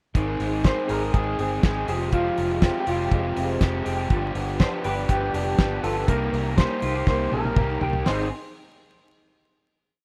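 A dance-floor indie beat at 121 BPM in straight 4/4 drives this breezy, bright jangly indie pop piece in Ab major: the cloth-damped drum kit sits up front with a fat snare, tight kick and off-beat open hats, while the foam-muted fingered bass plays round, punchy eighth notes and an overdriven garage guitar strums barre chords through Ab, Fmadd9, G7 and Cm7. A slightly broken-up guitar through a small old amp adds a lo-fi fingerpicked roll pattern with ensemble chorus, and from 0.7 seconds a twangy lead guitar carries song-like motifs, bathed in lush chorus and slapback echo. After a drum fill from 7.1 seconds, the piece lands on a final Ab chord at 8.1 seconds, all within a rough home-demo sound with small-room ambience and vinyl crackle.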